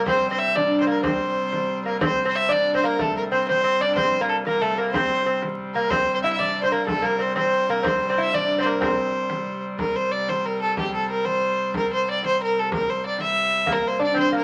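In a straight 6/8, this rustic, festive medieval dance sets a reedy, gut-string fiddle melody up front over a delicate, fingerpicked lute second line that drops out at 9.6 seconds and returns at 13.7, a smooth-topped, wheel-bowed hurdy-gurdy drone and a deep frame drum played with soft hands, all in a moderate studio reverb under a layer of vinyl crackle.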